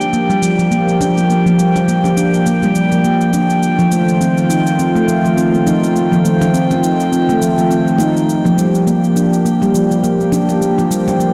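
A mellow, ringing handpan sits up front, playing soft arpeggios through a low-pass filter and digital delay in this meditative, earthy piece of organic downtempo in G minor at 103 BPM, with a swung 16th-note feel. Beneath it, a warm, detuned sawtooth pad holds sustained chords with chorus over Gm7, F7 and back to Gm7, while a glassy sine texture of drifting overtones hovers high with its own chorus and reverb. A filtered, electronic cabasa sits low in the mix throughout, soft-handed congas join in the background at 0.9 s, and the recording is bathed in a lush hall reverb yet sounds blown-out and overdriven.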